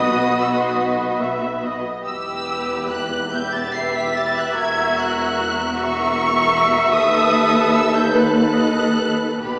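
In a rubato 6/8 at roughly 45-52 BPM, this melancholic, solemn slow romantic movement for string orchestra, a 9.6-second fragment cut from a longer piece, moves from B to E minor to B7/D#, with a lush, expressive violin section carrying the high melody with portamento, a focused second violin line, a smooth, even viola accompaniment, a dark, soft-attacked cello bass and a close double bass sitting in the background, all bowed with vibrato and set in a wet scoring-stage reverb heard from further back through a small-speaker sound.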